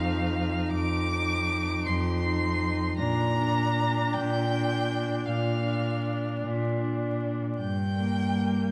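A dark recording with vinyl crackle sits in a moderate concert hall reverb, framing a slow, lyrical romantic movement for string quartet in a rubato 12/8. A clear first violin sings the melody high above, a focused, distant second violin carries its own line beneath, the viola fills in a rich accompaniment, and a smooth, even cello anchors the bass, with all four bowed players using vibrato. The harmony moves from F to Bb and on to G minor across this brief 8.7-second passage cut from a longer piece.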